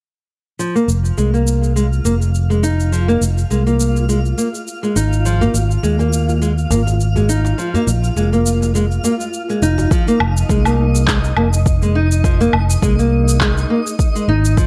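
A fingerpicked nylon-string guitar opens at 0.6 seconds, playing small arpeggios up front through a low-pass filter and analog delay, joined at once by overdriven electronic shaker, woodblock and handclaps that were re-recorded in a large room. Moments later, a dark, round fretless electric bass settles in up front with a sidechain pump, and a twinkling granular texture fades in high above, its slow-attack FM shimmer sustained on a long release and bathed in its own reverb. This is meditative, mystical organic downtempo in F minor pentatonic at 103 BPM, with a gentle swing on the sixteenths. At 5.4 seconds a medium-tuned djembe with metal rattles enters in the background, its acoustic live-room sound colouring the Ab5 and Bb5 chords. At 9.9 seconds the djembe drops out and a deep, overdriven electronic kick arrives on an Fm7 chord, giving the closing stretch of this fragment more weight. 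Overall the sound is dry and gritty, with a hardware edge.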